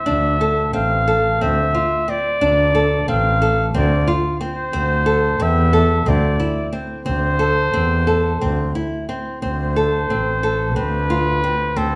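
A clear, soft-attacked flugelhorn carries the vintage-toned, classical-style solo melody in this hypnotic, restless chamber piece, set in D dorian in 7/8 at 180 BPM counted in eighths and tuned slightly below standard pitch. A small, fingerpicked nylon-string guitar plays arpeggios beneath it, moving from Dm7 to Am/D, while a single bowed double bass gives a rich, biting bass line with light vibrato and a smooth top; all three sit up front in a recital-hall reverb. The music shifts to a new section at 9.4 seconds, and the recording is cut from a longer piece.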